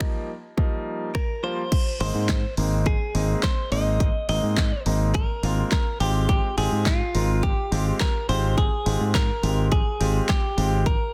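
A dry, dense and heavily limited modern mix opens this driving, energetic dance-pop excerpt on a house kit of punchy layered kick and snare, with soft clipping on the snare, plus handclaps, finger snaps, hi-hat and crash, under a clear concert grand piano whose audible action noise and long sustain pump against the beat. A bright, twangy clean electric guitar, picked and recorded direct, enters at 1.1 seconds with the melody, colored by vibrato and tape echo. A growly, up-front fingered electric bass joins at 2.0 seconds, also pumping with the sidechain, as the harmony moves from Ebadd9 through Abadd9 to Fmadd9/Ab.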